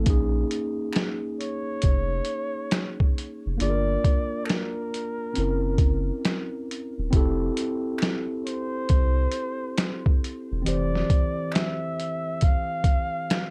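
A swung 68 BPM groove from a lo-fi sampler-style drum kit sets this nostalgic, dreamy lo-fi hip hop excerpt in F major, its muffled, pitched-down beat built on a thumpy kick and medium-tuned snare, while compressed, saturated finger snaps sit in the background from 0.9 seconds. A mellow tine electric piano, heard through built-in speakers and low-pass filtered, carries chords from Bbm7 through a Gb7#11 to a rootless Fmaj9 over a round, deep dub sub bass that drops out at 11.0 seconds. From 1.4 seconds a breathy flugelhorn takes a jazz-style solo with vibrato and scooped notes, all captured dry with a cassette-tape character.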